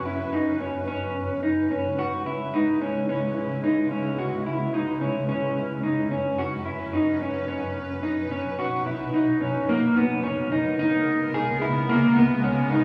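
A dark, slightly broken-up electric guitar plays fingered arpeggios drenched in lush chorus and digital delay over a cloudy, detuned granular pad of slow-attack sustained chords in this haunting, melancholic dream pop excerpt at 109 BPM in C# dorian, moving from F#sus4 and C#m7 through B before settling on G#madd9/C# at 9.7 seconds, all bathed in a wet recital hall reverb.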